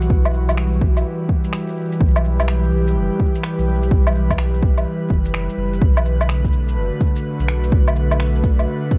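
A swung 4/4 groove of overdriven, 12-bit-gritty electronic kick drum sits up front, layered with a softer bed of electronic shaker, woodblock, finger snaps and cabasa sharing the same crunchy sampler grit, in this wistful, ghostly future garage excerpt. Beneath it a round, sine-like sub bass pumps with sidechain movement and drops out at 8.7 seconds. An airy, breathy pad with detuned, chorused shimmer holds sustained chords that move from Emadd9 to Bm7 at 5.8 seconds, all set in a haze of digital ambience and vinyl crackle.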